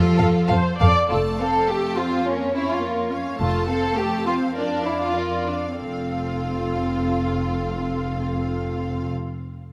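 A graceful, lively string-orchestra movement in the classical-period style opens with a focused, close violin section carrying the melody over a rich, up-front viola accompaniment and a lush cello bass line, all bowed with vibrato. At 0.2 seconds a warm second violin line and a dark, even double bass section join, the basses sounding beneath the cellos. The piece moves in a quick 2/4 around 90-107 BPM in F major with a rubato feel, and the harmony shifts from F to a shaded Bbm/F before settling back and passing through Bb/F. Between 2.8 and 5.8 seconds the tempo slows, and the music returns to F as a new section begins. A moderate scoring-stage reverb gives the ensemble a polished, spacious sound in this short cut from a longer piece.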